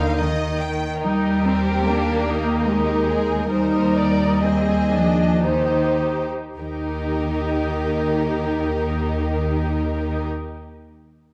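The cello section sits most prominent in this slow, romantic orchestral excerpt, carrying a smooth, even bass line with vibrato under the strings. A chamber-sized violin section sings the lyrical melody while a second, lusher violin section adds an expressive second line alongside it. A symphonic viola section fills in the accompaniment with a soft-topped sound, and the double basses, close and up front, hold a low Eb. The music moves in a rubato 3/4 in Eb major, slowing through its first 6.6 seconds, with the harmony shifting to Ab over an Eb bass at 3.5 seconds before settling home on Eb. A dark, warm production and the long bloom of a scoring-stage reverb give the whole tender passage a rich, enveloping glow.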